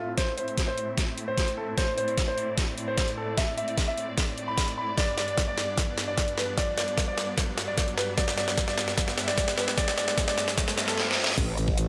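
Chaotic and menacing, this heavy wobble dubstep cut, taken from a longer piece, moves at 150 BPM in a half-time feel in A minor, shifting from Am to G and back to Am. A concert grand piano carries the melody from the start, its tone intimate with audible action noise and long sustain, treated with delay. Beneath it a bright, lush studio string section holds bowed chords with vibrato, pumping against the sidechain while a low-pass filter sweep runs across the whole build-up. Overdriven drums sit up front: a knocking electronic kick and a layered kit with a deep snare, bright hats and crash cymbal, rolling through drum fills as a riser and reverse cymbal rise in the background from 3.1 seconds. The build-up peaks at 11.4 seconds, when a saturated, growling wobble bass with chorus and a formant filter bursts in on a low A, all set in a moderate digital room reverb.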